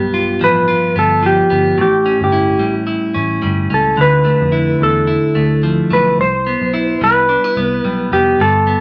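A short excerpt from a longer piece, bathed in a wet studio reverb, this indie and bedroom pop track moves at 109 BPM in 4/4 with a lightly swung sixteenth feel, and its mood is hazy and lonely. A bright, twangy clean lap steel carries the slide melody up front, while a dark, picked clean electric guitar with a warbly pitch drift fills in the chords beneath it. A vintage foam-muted electric bass adds a round, punchy low end through the changes from G7 and A7 to Dmadd9 and Cmaj7.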